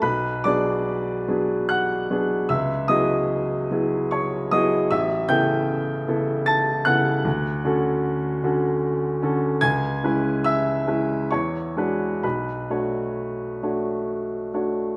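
Bathed in the wet reverb of a concert hall, this hazy, nocturnal excerpt of impressionist classical solo piano in B minor drifts in a rubato 3/4 at 60-78 BPM. A clear, open, up-front baby grand with long sustain spans A1 to A6 through extended harmonies such as Bm6, C#m11, A9, Dmaj7 and E9 before settling on Bm9 at 12.2 seconds.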